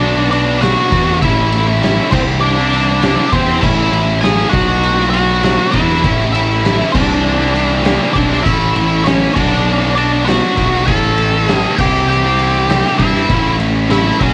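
Cathartic and bittersweet, this quiet-loud alternative rock excerpt moves at 99 BPM in a straight 4/4, tuned slightly flat to A4 = 436 Hz, cycling through Bm, A and Cadd9 with a closing turn to C. Up front, a dark octave-fuzz lead guitar carries the melody over a bright, double-tracked high-gain guitar riff and a punchy, fuzz-laden picked bass, the guitars colored by cassette tape grit and the lead bathed in plate reverb. An oversized, low-tuned acoustic kit enters at 0.3 seconds and sits in the background with a boomy kick, fat snare, dark cymbals and a saturated, rolled-off top, all within a lightly reverberant home cassette recording.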